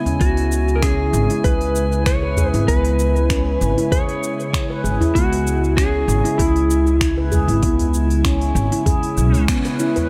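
A gently swung 4/4 groove from a deep electronic kick, a smooth deep house kit of cabasa, finger snaps and hi-hat, and a small, acoustic udu drives this mystical, earthy organic downtempo excerpt, cut from a longer piece, over a woody, thumpy pizzicato upright bass with sidechain pumping. A ringing, meditative handpan plays mellow arpeggios through tape echo, while a slightly broken-up electric slide guitar carries a dark melody, also echoed, over a sustained C#m7 chord from a detuned sawtooth analog pad with chorus and sidechain pumping. A glassy, drifting harmonics texture hovers in the background, and an electronic swell enters in the background at 9.1 seconds beneath a brief band accent near the close, all in a light reverb.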